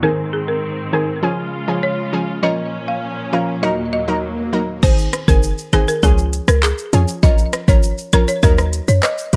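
A woody, rustic folk marimba struck with hard mallets carries the melody throughout this hypnotic, tough dancehall excerpt at 100 BPM, its dry, percussive tone passed through a low-pass filter and digital delay. Beside it, an analog pluck built from detuned sawtooth and square waves supplies up-front accompaniment, round and chorused, with a filter sweep and moving notch shaping its fast-attack, decaying notes. For the first 4.8 seconds a rich studio string section holds smooth, bowed chords with vibrato, pumping under sidechain and softened by a low-pass filter. A filter sweep runs across this opening, and a background downlifter and swell enters at 3.0 seconds. At 4.8 seconds the groove arrives: an electronic afro-pop kit with a deep kick, smooth hats, crash, handclaps, rim clicks and shaker sits up front, joined by a punchy, tight 808-style bass with a sine body and noise layer. An egg shaker played with soft hands and recorded in a small room sits in the background. 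The harmony cycles through Ab, Db, Bbm and Ebm, all set in a digital ambience.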